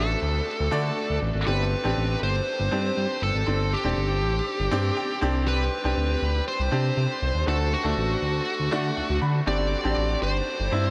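A dreamy mix soaked in a huge ambient reverb, with a long 8.1-second decay, frames this brief cut from a longer 1980s-style pop piece at 120 BPM in a straight 4/4, and the mood is dramatic and moody. A distorted, high-gain electric lead guitar carries the melody up front, picked and treated with tape echo. A brilliant, polished grand piano supplies the accompaniment with short sustain and adds fills at 4.7 and 8.7 seconds. Underneath, a smooth synth bass built from sawtooth and square waves holds sustained notes with a fast attack and vibrato, its tone evolving over time. The harmony moves from D to Gsus4 and Csus2, then back through D to Gsus4, with guitar, piano and bass playing together from start to finish.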